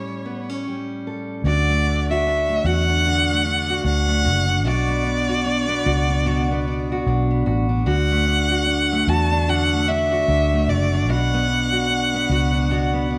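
A close, expressive bowed violin sings the melody with vibrato and gliding portamento over a dark, full-bodied fingerpicked steel-string acoustic guitar in this easy-going, carefree acoustic pop piece at 75 BPM in D major with a gentle sixteenth-note swing, as a round, punchy foam-muted electric bass joins at 1.4 s after a brief break, all set in a moderate echo-chamber reverb.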